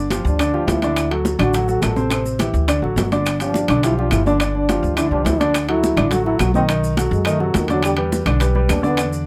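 Smooth, vintage grand piano and a woody pizzicato upright bass open this lively, sophisticated Afro-Cuban jazz passage at 210 BPM in D mixolydian, joined at once by thick-skinned background congas, very quiet round bongos, grainy maracas and ringing, saturated timbales, before a dark, breathy, whispered trombone takes the solo from 0.3 seconds over small-room claves, in a close, detailed recording with little reverb.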